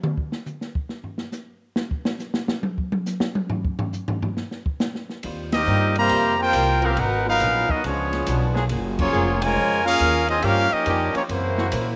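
A dark, smooth drum kit with boomy kick and dark cymbals takes a solo for the first 5.2 seconds of this brassy, energetic big band swing excerpt at 139 BPM. Then a woody, growly upright bass and a boxy, very quiet picked acoustic guitar enter, and a tight, up-front trumpet section with slapback echo soon carries the melody over a clear trombone line and, later, sustained background trombone chords. The band hits accents at 5.5 and 8.9 seconds amid rich chords like Abm11 and Gbmaj9 in light studio reverb.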